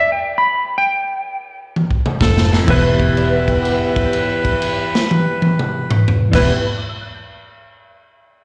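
Brooding and soulful, this electric blues shuffle fragment opens with a dark, clean lap steel guitar carrying the melody alone through a slowing stop, until a gritty, saturated breakbeat drum kit with dark cymbals and a tight kick arrives at 1.8 s with a fill. At 2.2 s a jazz-style horn section adds present stabs over a round, punchy, foam-muted electric bass. Soon after, a twangy, slightly broken-up guitar riff with phaser sits in the background, a reedy electric piano shimmers with fast tremolo, and a very quiet lo-fi second guitar sits on a high E, while slapback echo touches the steel, horns, riff guitar and piano and the whole band sounds like a live gig heard through a venue's PA with recital hall reverb.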